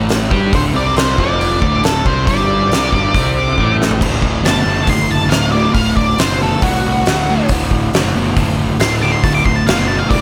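Swaggering and driving, this blues rock and southern rock power-trio excerpt at 138 BPM in D mixolydian rides a crunchy, double-tracked overdriven guitar riff and a round, fuzzy picked bass, pushed by an oversized low-tuned drum kit with a fat snare, punchy kick and dark cymbals in a bright, pumping stone room, while a very quiet, gritty tonewheel organ holds thick chords through a slow rotary speaker until 4.0 seconds. A dark octave-fuzz lead guitar enters at 0.6 seconds, and after a drum fill at 3.6 seconds it breaks into a solo that runs to the end.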